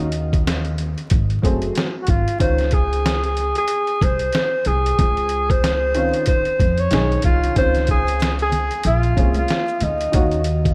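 A breathy, whispered alto saxophone carries the melody up front, with a diffuse ambient delay, over a slightly detuned vintage upright piano with analog chorus, a woody pizzicato upright bass and a gritty, pitched-down sampler-style drum kit with a thumpy kick, in this smooth, relaxed jazz-hop excerpt at 93 BPM in Db major with swung sixteenths, a dreamy mix soaked in plate reverb and vinyl crackle, chords moving from Ab7b9 to Dbmaj9, and bright maracas and congas joining in the background at 7.6 seconds.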